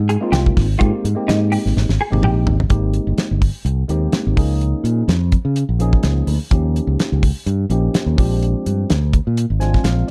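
A dark, warm small-room production frames this funky, soaring cut of electric jazz fusion with a light sixteenth-note swing. Up front, a damped 70s drum kit with a fat snare, tight kick and rolled-off top sits beside a direct, amped fingered electric bass, while a bright, barky tine electric piano with lush chorus carries the chords from Abmaj9 through Db69, Eb9 and Bb13. A compressed, picked clean electric guitar adds brief stabs with ensemble chorus until 2.4 seconds, a drum fill arrives at 1.8 seconds, and the electric piano closes with a fill at 9.4 seconds.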